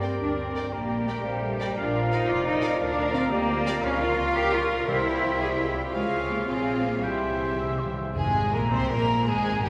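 In a rubato 6/8 lilt, this stormy, dramatic classical passage sets two chamber violin sections in the background, one carrying the melody and the other a second line, alongside an airy flute group, a vintage-toned cor anglais, a faint clarinet and a hushed horn section holding sustained chords. A smooth, up-front symphonic cello section and a focused double bass section anchor the bass, while a lush viola section and a mellow bassoon fill in the accompaniment. Dry, close timpani enter at 4.9 s with a fill at 7.0 s before most of the winds fall away near 8.0 s, and the strings sound out in a cavernous cathedral reverb in this fragment of a longer piece.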